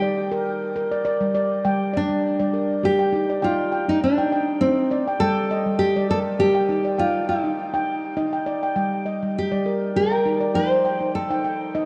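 A lilting 3/4 pulse at 101 BPM, with a gentle swing on the sixteenths, carries this hypnotic excerpt of meditative world music in G minor, tuned to A4 = 442 Hz. Up front, a full-bodied, fingerpicked nylon-string guitar sings the melody while a handpan of nitrided steel, played with soft fingertips, spins ringing, mellow arpeggios, both bathed in shimmer reverb and diffuse ambient delay. The dark production sits in a wet echo-chamber reverb with small room ambience as the chords move from Gm through Cmadd9 and Ebmaj7 before settling on F.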